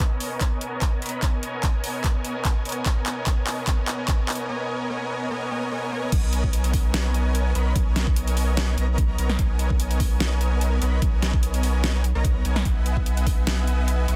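Half-time future bass at 147 BPM in 4/4, with a light swing on the sixteenths, this cut from a longer piece sits in B major and feels euphoric and playful. A dubstep drum kit with a deep snare, bright hats, handclaps and crash cymbal runs throughout, overdriven and set in a small room, while an up-front electronic kick drum with a knocking, layered punch plays from the start until 13.4 seconds. The opening build-up carries a drum fill through its first 4.5 seconds as a huge, detuned supersaw riff with vibrato, fast attack and a sub octave pumps against the sidechain through a low-pass filter and digital delay. At 6.1 seconds the drop arrives and a thick, saturated sine sub bass enters on B1, pumping and sustained beneath the riff. The harmony rests on Bmaj13 before moving to Emaj9/B near the end, all within a dense, heavily limited modern master with digital ambience.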